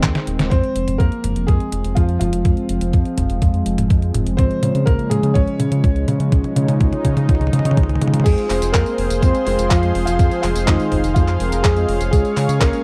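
Italo disco in F minor at 124 BPM, this melodramatic, danceable cut opens on a drum fill and a band accent at 0.4 seconds before a boxy concert grand piano carries the melody through tape echo from 0.5 seconds over a smooth, detuned analog pad with chorus and a filter sweep, mellow chorused synth brass stabs in the background, a round, deep sawtooth bass, a thumpy electronic kick and a detuned 8-bit drum machine of snare, handclaps, hi-hat, tambourine, toms and crash, all set in a dry, close 1970s-style studio sound as the chords move from Fm to Db.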